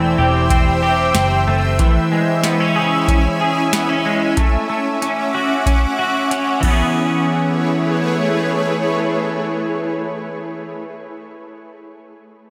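Washed in the long, airy tail of a concert hall, this dreamy, ethereal dream pop excerpt moves at 93 BPM in a straight 4/4, in A major. A shimmering ambient pad holds sustained, bright chords, its detuned, granular sine tones blooming with a slow attack and an octave-up sparkle, colored by chorus and its own built-in reverb. Up front, a twangy electric guitar sitting at the edge of break-up picks arpeggios through analog chorus and digital delay. A dark, round, foam-muted picked bass plays only until 1.8 seconds. A booming analog drum machine comes in at 0.5 seconds with a deep kick, crisp snare, metallic hi-hats and crash cymbal, and drops away at 6.8 seconds. The harmony drifts from C6/E through E6 and Dmaj7 to a closing Amaj9.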